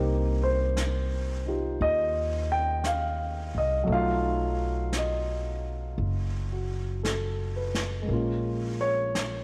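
A dark, mellow grand piano and a woody, pizzicato upright bass sit up front from the start of this intimate, smoky jazz ballad fragment at 57 BPM in swung 4/4, moving through Cm7, B7#11 and Bbm7, while a distant, roomy brush kit of snare and hi-hat enters at 0.8 seconds, all framed in light reverb and studio ambience.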